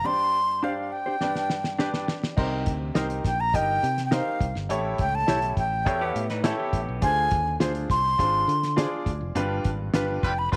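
Uptempo 1960s-style soul, driving and passionate, where an airy, expressive concert flute carries the melody up front over an intimate grand piano with audible action noise, punchy fingered electric bass and clean, compressed guitar stabs in the background. After an opening break, a cloth-damped, thuddy drum kit with a fat snare and dark cymbals enters at 1.2 s with a fill, a slightly broken-up, lo-fi guitar riff with subtle chorus appears briefly at 6.0 s, and a tight vintage horn section adds a second line at 10.2 s during a closing band accent. Light reverb gives the cut from a longer piece a small-room feel.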